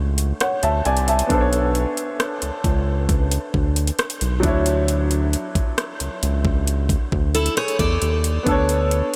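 A baby grand piano with audible action noise and a round, deep analog bass touched by ring modulation open this moody, late-night contemporary R&B fragment, joined at 0.2 seconds by an overdriven electronic drum kit of knocking kick, metallic hi-hat and rim click, while a picked steel-string acoustic guitar with delay and finger squeak adds brief arpeggios from 7.3 seconds, the whole mix soaked in a huge, dreamy reverb over chords moving from E13sus4 through Bm9 and Dmaj9.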